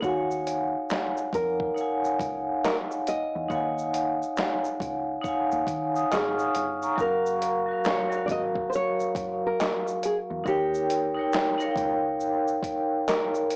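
A slow, swung 4/4 at 69 BPM sets a reflective, nostalgic lo-fi hip hop mood in Eb minor, in a short passage cut from a longer piece. A dusty, sampler-style drum kit carries handclaps, hi-hat, shaker, a thumpy kick and a medium-tuned snare, its gritty, compressed sound re-recorded in a large room. A deep, round dub bass, fingered and foam-muted, sits low under tube saturation and stops just before the end at 13.3 s. Up front, a bright, metallic vibraphone struck with hard mallets rings with a slow motor vibrato through cassette tape and a low-pass filter, while a full-bodied nylon-string guitar, fingerpicked with audible finger squeak, plays the filtered melody. The harmony moves from Ebm11 to Gbmaj7 at 7.0 s and then Eb7, all heard through a moderate booth ambience and a small-speaker, home-cassette character.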